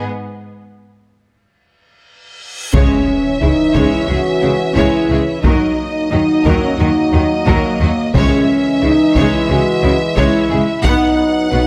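Closely miked with light reverb, this dark, epic cinematic orchestral excerpt at 89 BPM in C# dorian opens with a clear, intense violin melody over warm French horn chords and a background cello bass, until a huge, bright reverse cymbal swelling from 2.3 seconds into an impact at 2.7 seconds brings in a focused second violin line, expressive violas, distant, roomy trombones, smooth double basses and a hard-stick taiko ensemble, with a calf-headed timpani sounding from 8.1 seconds.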